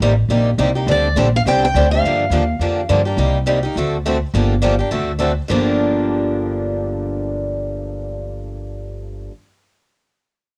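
A parlour-toned steel-string acoustic guitar picks a short melody from 0.9 to 2.9 seconds over a fiery, bittersweet excerpt of acoustic string swing, with a boxy, bright swing-style guitar up front and a full-bodied jumbo steel-string guitar in the background, both tape-coloured, picking accompaniment beside a woody, thumpy pizzicato upright bass, all captured as a home cassette recording with light reverb.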